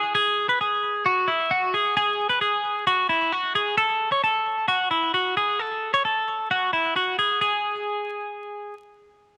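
A straight 4/4 pulse at 132 BPM carries this bright, nostalgic indie pop fragment in E major, tuned slightly low to A4 = 439 Hz and lifted from a longer piece. A clean, twangy twelve-string electric guitar sits up front, picking compressed arpeggios between E4 and C#5 through a digital delay from the start until 8.7 s, with a new section arriving at 7.4 s. Light reverb and a layer of vinyl crackle give the recording its faded, memory-like glow.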